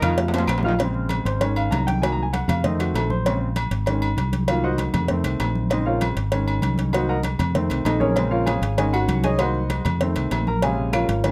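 A clear, present grand piano takes the lead in this fiery, danceable salsa excerpt in Bb minor, soloing from 0.8 seconds to the end over a looping Bbm7, Absus4, Cm7b5, F7 progression at a brisk 195 BPM in straight 4/4. Beneath it, a round, punchy fingered electric bass sits up front, direct and amped, anchoring the low end throughout. The piece opens with a drum fill, joined for the first 0.7 seconds by a brilliant, tight trombone section with light vibrato set back in the mix, while woody claves tap briefly at the start and again near 10.9 seconds. A tight, high-tuned cowbell played with soft hands drives the groove alongside ringing, saturated agogo bells and timbales with a compressed metal-shell bite. Thick-skinned, medium-tuned congas fill in from the background, and light reverb with close, detailed miking keeps the whole performance vivid and immediate.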